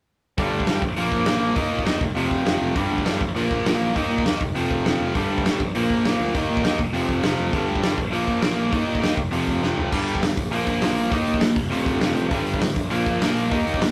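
Rowdy, energetic punk rock cut from a longer piece, where an up-front overdriven stack guitar and a tight, bright distorted guitar hammer a picked power-chord riff cycling G5, Bb5, Eb5 and F5 over a growly, fuzzed electric bass sitting in the background and a loose, small-room acoustic kit with a tight kick and medium-tuned snare, whose drum fill at 9.6 seconds kicks the band into a new section at 9.9 seconds, all captured as a rough rehearsal-room recording with tube saturation and light reverb.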